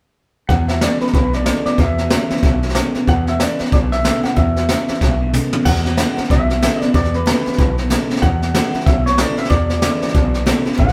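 A jazz brush drum kit sits up front in this rowdy, retro rockabilly piece, its high-tuned snare, boomy kick and dark cymbals heard with a distant, roomy small-room character. The tempo is 186 BPM in 4/4, with a swung eighth-note feel in E mixolydian over an E7 chord. An upright bass plays pizzicato on gut strings, giving a woody, thumpy low end, while a fingered, compressed electric guitar through a small old amp carries the warm, twangy melody. A second slightly broken-up electric guitar plays a bright, picked riff low in the background, alongside a picked steel-string dreadnought acoustic with fresh strings, a full-bodied tone and audible finger squeak. The band plays live together in a moderate stone room, and a drum fill from 5.0 seconds leads into a new section at 5.7 seconds in this passage cut from a longer piece.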